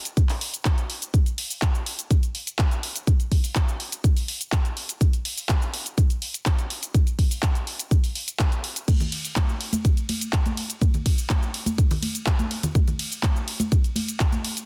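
A straight 4/4 house groove at 124 BPM is driven by a punchy, layered electronic kick from 0.2 seconds, alongside an up-front pop drum kit of handclaps, hi-hat, shaker, ride and crash cymbals with sidechain pumping that begins at 0.1 seconds, while close, dry congas struck with hard hands enter at 8.9 seconds, all in a dreamy, emotional mood with little reverb and a dense, heavily limited modern master in this short cut from a longer piece.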